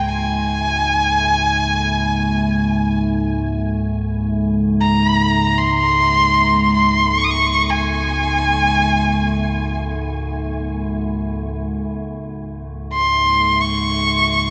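World meditative music in free time, this short passage lifted from a longer piece feels peaceful and spacious. A single bowed violin carries the melody high in its register, its clear, focused tone shaded with vibrato and touched by tape echo, sounding distant yet up front. Beneath it, a metallic, inharmonic drone sits low and eerie, with a slow attack, long sustained tones and a long release, thickened by chorus and its own built-in reverb. Both parts sound together from 0.0 to 14.5 seconds, the violin slightly the louder of the two. A huge, wet ambient reverb with an 8.9-second decay surrounds the pair, stretching every note into a vast, floating space.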